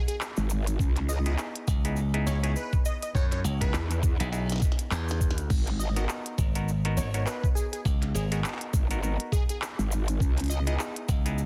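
A swung 16th-note groove at 102 BPM in 4/4 drives this gritty, playful glitch hop passage in G# minor, cut from a longer piece and tuned slightly flat of concert pitch. An up-front, pitched-down electronic kick thumps with tape-softened grit beneath a glitchy drum kit of tiny snare, clicky hats, handclaps and crash, which sounds re-recorded in a large room and breaks into a fill at 4.3 seconds, while a grainy cabasa sits in the background. Two basses carry the low end: a growling, wobbling, detuned bass pushed through a formant filter and chorus, joined at 1.7 seconds by a punchy, glassy slap bass. Above them, a stringy, twangy clav jabs out stabs through a combo amp with sidechain pumping, and a catchy, detuned sawtooth unison lead carries the melody with vibrato, a filter sweep and a moving notch, both of these parts roughened by 12-bit sampler crunch and tape echo. The harmony moves between G#m7 and C#m9, and the dry, dense, heavily limited master is dusted with vinyl crackle.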